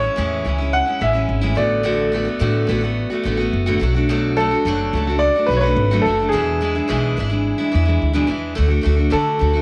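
An easy-going, heartfelt acoustic pop excerpt moves in a straight 4/4 feel, cut from a longer piece. A clear upright piano carries the melody in its middle-upper range, its smooth, vintage tone ringing with long sustain. Beneath it, a picked steel-string acoustic guitar supplies full-bodied, up-front accompaniment, while an upright bass played pizzicato adds a dark, thumpy foundation with a woody edge. All three parts sound together from start to finish, moving through Amaj7, D6/A, Bm7 and E7 before arriving on D at 8.6 seconds. Moderate echo-chamber reverb and the ambience of a small room give the trio an intimate, close-knit sound.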